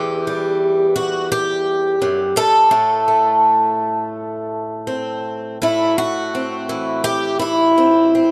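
A light reverb surrounds this short cut from a longer piece, with lossy compression artefacts in the sound. It is a haunting, melancholic folk solo in A dorian at 84 BPM in 4/4, played with a rubato, swinging feel on a picked twelve-string acoustic guitar. The guitar sits up front with a bright, shimmering, octave-doubled tone from fresh strings, a boxy body and audible finger squeak, moving from Em to Am at 2.7 seconds across a range from E2 to A4 before the cut at 8.3 seconds.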